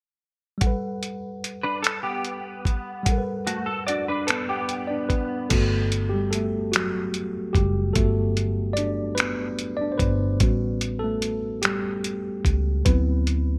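A worn, slightly out-of-tune tine electric piano sits up front in this intimate slow R&B excerpt in 6/8 at 49 BPM in G major, moving from Gmaj9 to A13 and D13 and taking a solo from 5.5 seconds. A gritty, compressed sampler-style kit of thumpy kick, hi-hat, finger snaps and crash carries a gated reverb, while a clean hollow-body guitar with ensemble chorus adds a second line from 1.6 seconds. From 5.5 seconds, a dark, round, foam-muted fingered bass joins under a moderate plate reverb and a bright 1980s-style digital sheen.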